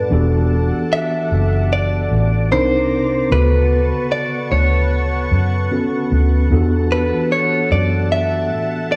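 Sensual and late-night in mood, this short R&B excerpt moves at a relaxed 75 BPM in 4/4 with a gentle swing on the sixteenths, sitting in E dorian. A mellow tine electric piano carries the accompaniment from the start, its clean tone heard through built-in speakers and placed up front. Alongside it, a lush, detuned unison pad holds sustained chords with a slow attack and a warbling chorus. A dark, foam-muted fingered electric bass enters at 0.1 seconds with a round, amped sound, and a clean, compressed electric guitar recorded direct picks out the melody from 0.9 seconds, touched with spring reverb and analog delay. The harmony moves from Em11 through Cm9 and Bm9/D before returning to Em11, all captured in a dry, gritty hardware recording with small room ambience.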